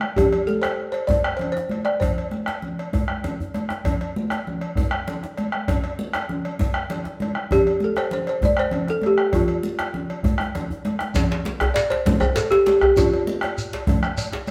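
West African traditional drum ensemble music, powerful and festive, rolls along at 131 BPM in a straight 12/8 feel in F major pentatonic. A deep, dark bombo sits up front beneath distant, bright congas, a metallic cowbell and a djembe with metal rattles, while a woody, round balafon plays from 0.2 s and again from 7.5 s. A second tight, cracking djembe and a grainy shekere join near 11.1 s, with drum fills and a stone-room reverb giving this cut-off portion a live feel.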